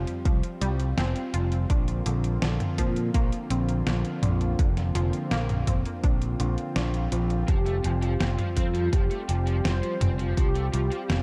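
A straight 4/4 pulse at 83 BPM, driven by a punchy, layered electronic kick and a sampler-style 12-bit drum machine with a fat, tape-toned snare, hi-hat and toms, runs through this uplifting, nostalgic synthwave excerpt, where an up-front picked electric bass and a smooth, detuned sawtooth pad both carry sidechain pumping over Fsus2 and Bbadd9 chords, a bright, round filter-plucked arpeggio with chorus, 12-bit grit and digital delay runs until 7.4 s, and from 7.5 s a mellow, brassy synth melody with vibrato, chorus and tape echo joins a raw, overdriven, double-tracked garage guitar riff carrying ensemble chorus and delay, inside a digital ambience with a dark, warm production.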